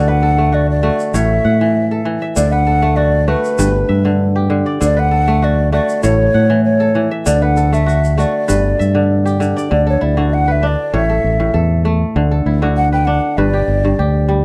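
Dry, close 1970s-style studio sound with light reverb and lossy compression artefacts frames this hypnotic West African traditional excerpt in D major at 98 BPM, in a straight 4/4 that cycles through D, A and G chords. Up front, a crisp, ringing kora plays fingerpicked arpeggios while a growly, bright fingered electric bass anchors the low end, and an airy, hollow jazz flute carries the tongued, straight-toned melody. A grainy tube shaker adds texture from 1.0 to 9.6 seconds, and the piece moves into a new section at 9.7 seconds.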